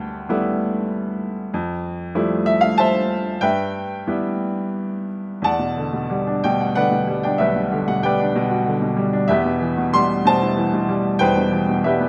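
A brilliant, woody upright piano plays alone and up front through the whole 12.1 seconds of this hopeful, relaxed classical fragment cut from a longer piece, moving in an unhurried rubato 3/4 at roughly 87-99 BPM in G mixolydian, its lyrical lines spanning from deep bass to high treble over chords that drift from G6/9 and Fmaj9 to Em9 and Cmaj7/E, all set in light reverb.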